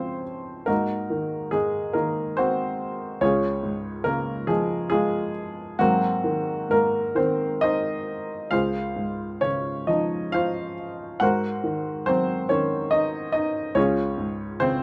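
Lightly reverberant and intimate, this 14.8-second fragment of a longer classical work features a solo baby grand piano, heard up front with audible action noise and short sustain, playing a tender, lyrical line in a rubato 6/8 that moves between major-seventh and ninth chords.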